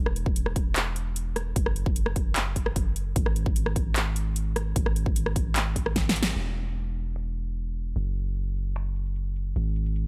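A long, deep 808-style bass opens this euphoric, playful future bass piece, its sine tone striking with a fast attack, then decaying in a mellow way while sidechain pumping moves it under the beat. The track runs at 150 BPM in 4/4 with a half-time feel, and the first 6.4 seconds form a drop. A big-room dance kit sits up front with a punchy snare, metallic hi-hats, crash cymbal, finger snaps, handclaps and rim clicks, all layered and produced, with low-pass filtering on the snare, hats and cymbals. A punchy, layered electronic kick drives the drop until 6.0 seconds, when a drum fill begins, running to 6.4 seconds with a band accent at 6.2 seconds. From 6.4 seconds a filter sweep runs over the drums as the bass carries on beneath them. The mix is dry, with little reverb, in a short excerpt cut from a longer piece.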